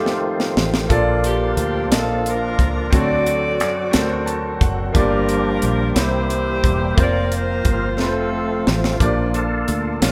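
A live band plays together in one large studio, and a moderate reverb surrounds this short cut of slow gospel in 6/8 at 59 BPM in Bb major, soulful and jubilant in mood. A saxophone section carries the melody with light vibrato in a pop style, while a grand piano, brilliant and intimate with audible action noise and long sustain, accompanies and adds a fill near 3.9 seconds. A tonewheel organ holds reedy, clean chords through a fast rotary speaker and chorus vibrato, its key click audible, and takes a short solo from 9.0 seconds as the saxophones stop. Underneath, a fingered electric bass sounds punchy and foam-muted, and a tight funk drum kit sits up front, dry and airy with a high-tuned snare, opening with a fill and playing another just before the organ solo. The chords move from F7 and Bbmaj7 through D7, Gm7 and C7 to an Fsus4 that settles on F before arriving on Bb.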